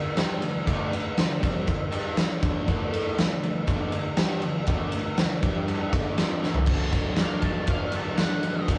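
Garage rock with a swaggering, rowdy energy at 120 BPM in a straight 4/4, this excerpt from a longer piece opens on a crunchy, double-tracked overdriven guitar riff over power chords, joined at 0.2 seconds by an oversized, low-tuned drum kit that sits up front with a boomy kick, dark cymbals and a pumping room sound roughened by vintage 12-bit sampler grit. After a drum fill at 6.4 seconds, the music shifts into a new section where a dark octave-fuzz lead guitar enters at 7.2 seconds with a short, distorted solo in a high register. The whole take has the rough feel of a rehearsal-room recording on cassette tape, with saturation and a moderate stone-room reverb.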